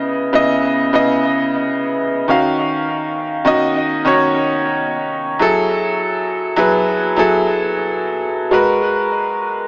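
R&B at 77 BPM in C# minor, this short cut from a longer piece carries a longing, late-night mood with a gentle 16th-note swing. A bright concert grand piano plays alone from 0.0 to 9.7 seconds, its brilliant, up-front tone and deep bass moving through lush minor ninth chords from C#m9 to G#m9. Dub echo trails the piano, and the echo-heavy mix sits in light reverb and small-room ambience with a small-speaker character.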